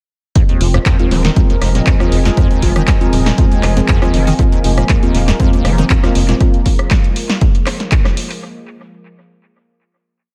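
Acid house with a gritty, raw feel, built as one long drop from 0.4 seconds in an echo-heavy mix, where an up-front, punchy electronic kick drives a four-on-the-floor beat and an analog drum machine adds programmed hi-hats, handclaps, rim clicks and a snare backbeat through tape echo. A squelchy, resonant acid bass plays an accented, sliding 12-step line that drifts against the bar, with filter sweeps, analog chorus and tape echo, and a round, deep bass plays off-beat notes from 0.6 seconds. Deep, nasal chord stabs in a dotted rhythm carry cassette tape grit and echo, while a smooth, detuned sawtooth pad and a warbling, nostalgic lo-fi pad with reverb sit in the background, both pads pumping under the kick's sidechain.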